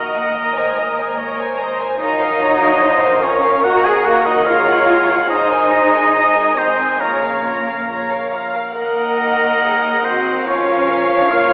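A clear, up-front oboe carries a second line from Bb4 to Ab5 with light vibrato and a smooth top, set against a bed of muted strings in this sorrowful, moving cinematic fragment, cut from a longer piece. The melody sits in a con sordino violin section, veiled and lush with soft attacks, while a second, more background violin section and a viola section add bowed, muted lines beneath it. A symphonic cello section with vibrato and a quiet double bass section form the bass, and a dark French horn section holds distant, roomy chords low in the texture. At a rubato 72 BPM in Eb dorian, the harmony moves through Abadd9, Bbm and Ebm, reaching Bbm at 10.5 seconds. Every part plays across the full 11.5 seconds, heard from further back in a reverberant concert hall with a thin, telephone-like coloring.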